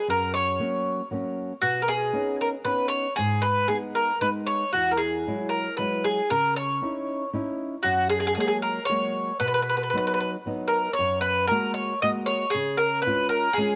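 Romantic and lively, this short cut from a longer Italian folk serenade moves at 116 BPM in a straight 3/4 lilt in B major. A picked mandolin carries the melody between F#4 and D#5, its double strings giving a round, warm tone that sits up front in the mix. Beneath it, a dark, thumb-plucked flamenco guitar plays the accompaniment from E2 up to F#4, set lower in level and entering at 0.1 seconds. The harmony moves through chords such as Badd9, G#m, Eadd9 and C#madd9, resolving to B before a second section begins at 11.0 seconds and closes on C#. Light reverb and a touch of studio ambience colour the sound of a home recording on cassette.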